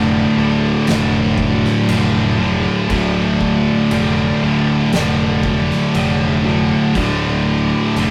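A bright, double-tracked high-gain guitar sits up front in this brooding, ominous stoner and doom metal piece, picking a heavy riff in D minor at a crawling 59 BPM in straight 4/4. Beneath it, two dark fuzz guitars pick their own low riffs in the background, thickening the sound from the very first moment. A growling fingered electric bass, overdriven and heard both direct and through an amp, anchors the bottom beneath the D minor harmony. The oversized, low-tuned acoustic drum kit enters at 0.9 s, its boomy kick, fat snare and dark crash cymbals set back in a bright, pumping stone room. The whole cut carries a rough rehearsal-room character with warm saturation and a moderate stone-room reverb, lasting 8.1 s as a slice of a longer piece.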